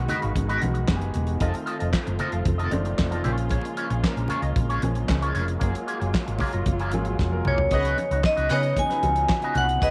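Disco at 114 BPM with a glamorous, danceable mood, built on a damped 70s drum kit with a fat snare, tight kick, handclaps and toms, a round hollow-body fingered bass up front, twangy wah-filtered electric guitar, background congas, a grand piano with audible action noise and woody, dark strings holding sustained chords over a G#m7 to F#maj9 progression, until a piano fill at 6.9 seconds and a drum fill lead into a C#9sus4 passage; a metallic, ringing vibraphone melody with tape echo enters at 7.5 seconds, just ahead of that change, and a lush violin section adds a second line from 7.7 seconds, all in light studio reverb.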